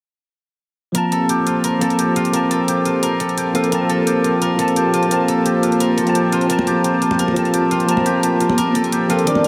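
A bright, clean tine electric piano sits up front in this dreamy, rolling liquid drum and bass excerpt at 173 BPM in G minor, voicing a Gm11 chord with analog chorus and delay. Beside it, a concert harp rings out fingerpicked arpeggios, acoustic and up front, its tone softened by a low-pass filter and trailed by delay. A smooth sawtooth-and-triangle analog pad with a sub octave and slow attack holds sustained chords in the background, mellowed by chorus. Overdriven electronic drums carry the groove: bright, layered hi-hats and a knocking kick pushed into the background, both re-recorded in a small room. Hard-handed, band-limited congas with a vintage character join at 6.6 s, and a barely audible riser appears at 9.3 s, all of it soaked in a huge ambient reverb that leaves the mix floating.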